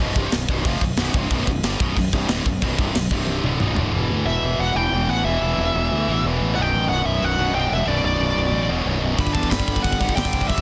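A bright, double-tracked distorted guitar riff sits up front in this epic, dark heavy metal passage, alongside a growly, punchy fuzz bass and a tight acoustic kit with bright cymbals that plays a fill at 3.3 seconds, then drops out until 9.2 seconds. A high-gain lead guitar enters at 4.3 seconds with a warm, picked melody in its upper range over chords that move from Bm to E5 and on to G. The mix is dense and heavily limited, with little reverb, and the passage is cut from a longer piece.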